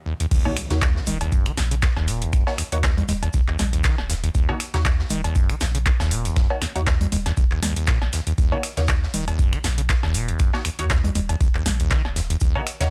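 Acid house at 119 BPM in Eb minor, hypnotic and trippy, cut from a longer piece: a squelchy, resonant sawtooth acid riff up front with filter sweeps and tube saturation starts at 0.1 s, and an electro drum machine with punchy snare, metallic hats, congas, cowbell, crash, snaps and handclaps joins at 0.2 s. A drop lands at 0.3 s with a very quiet electronic impact, a deep, tape-warm analog kick, a very quiet acoustic kit adding hi-hat, shaker and snare, and a round sine sub bass with sidechain pumping. Muted, detuned dub chord stabs with phaser, subtle chorus, cassette tape and analog delay follow at 0.5 s, all in a small room with a dry, gritty hardware sound.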